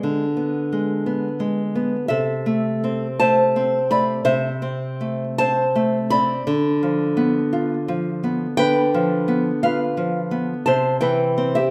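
A solo nylon-string guitar sits up front in a moderate recital hall, its small, fresh-stringed tone ringing into a reverb of about 1.5 seconds. This short classical excerpt, cut from a longer piece, is in A minor and moves in a slow, rubato 12/8 at around 57 beats per minute, counted in dotted quarters. The guitar plays a fingerpicked accompaniment spanning C3 to B5, drifting from a rootless E7 over D to A minor over C at 2.1 seconds. A diminished chord on B over D arrives at 6.5 seconds before the harmony settles back on A minor over C at 10.7 seconds. The mood is melancholic and yearning, with the unhurried harmony and intimate, warm sound giving each chord room to linger.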